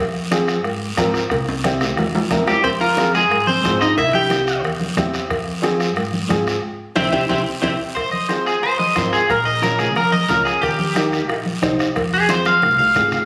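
A straight 4/4 cumbia pulse at 180 BPM drives this danceable fragment from a longer piece, carried by a soft-beatered bombo in a live room, ringing medium-tuned congas and metal-shelled cowbell and timbales set back in the mix, and a raspy guiro. A thumpy, woody upright bass on gut strings plays pizzicato beneath a dark, mellow upright piano whose chords hold with long sustain, moving through F minor, C7 and C in the harmonic-minor opening. At 2.5 seconds a twangy, slightly broken-up electric guitar steps up front with a picked melody touched by spring reverb and slapback echo, joined beneath by a second line from a nasal, metallic resonator slide guitar played with fingerpicks. The band hits an accent before both guitars return at 7.0 seconds, and from 8.0 seconds the electric guitar takes a clean solo over a shift to F minor, with Bbm and Eb chords. Drum fills punctuate the groove, and the whole has a phone-in-the-room character with studio reverb and compression.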